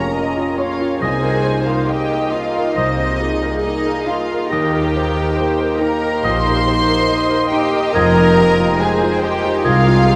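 Drenched in a huge, wet reverb, this cinematic passage sounds as if it were played in a vast, echoing space. Cut from a longer piece, it carries a longing, bittersweet mood in a loose, rubato 4/4. A studio violin section carries the melody with light vibrato and a gentle sul tasto touch, while a pure-toned symphonic violin section and a dark solo clarinet trace second lines beneath it. A woody, lush viola section and a vintage-sounding grand piano with deep bass sit in the background as accompaniment, and a French horn section holds present, sustained chords. At 1.0 s, a clear oboe and an airy, hollow flute add faint second lines, and an intimate cello section and a floating double bass section enter on the bass. The harmony moves from Bbm through Abadd9/C and Eb to Fm7 at 7.9 s.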